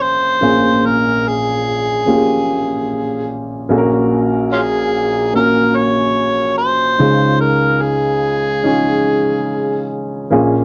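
Pop excerpt with a longing, heartbroken mood: an amplified, gritty harmonica carries a jazz-style solo melody up front with tongue slaps, scooped notes, light vibrato and a slapback echo until 9.9 seconds, over a dark, woody upright piano whose long-sustained chords move from Bbm7 through Gb/Bb to Dbadd9, captured in a dry, close 1970s-style studio sound with light reverb.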